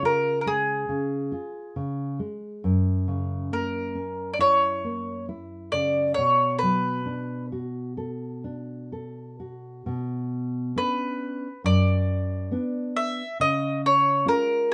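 A moderate studio reverb gives this short cut from a longer fado-style ballad a natural studio space, with both instruments up front. The mood is passionate and longing, moving at a rubato 68 BPM in 4/4 in B minor, tuned slightly high to A4 = 443 Hz. A mellow, woody mandolin carries the melody from start to finish, picked on double strings within a narrow upper range. Beneath it, a dark, deep classical nylon-string guitar accompanies throughout, thumb-plucked and reaching down into its low register. The harmony moves from C# through F#7 to Bm7. At 9.9 s the opening phrase returns over Bmadd9 and comes back to C# near the close.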